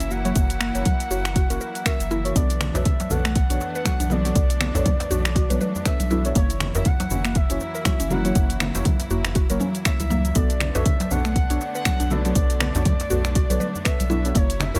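Driving and spiritual, this afro house excerpt at 120 BPM in B minor swings its 16ths on an up-front, deep electronic kick and an afro-pop kit of finger snaps, metallic hats and shaker, with congas and djembe joining in the background at 2.6 seconds, while a round analog bass, a woody mallet-like synth pluck playing arpeggios, a dark wave-folded chord stab with phaser and clear bowed symphonic strings all pump against the kick, and a smooth sawtooth lead with portamento and vibrato sings the melody through lush chorus, cassette tape and delay over a dry mix as F#7 and Bm9 alternate.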